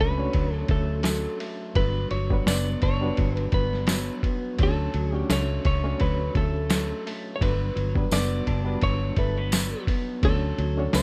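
A dark, clean lap steel guitar with subtle chorus and tape echo carries the melody through this hazy, laid-back bedroom-pop excerpt at 85 BPM in D major, drifting over Dmaj7 and Gmaj7 chords with a slightly broken-up electric guitar through a small old amp, a reedy, worn, slightly out-of-tune electric piano with fast tremolo, a round, punchy foam-muted bass and a muffled, thumpy sampler-style drum kit up front from 0.3 seconds, plus a jingly tambourine joining at 1.1 seconds, all in a rough home-demo mix with light reverb.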